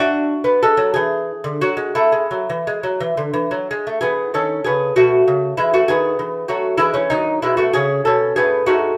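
A 6/8 pulse, loosened by rubato at 57-66 BPM in dotted quarters, carries this flowing, radiant fragment of a classical baroque-style dance for solo lute, its delicate fingerpicked gut double strings, some doubled at the octave, sitting up front as the harmony settles into E major at 4.0 s, all bathed in a moderate stone-room reverb.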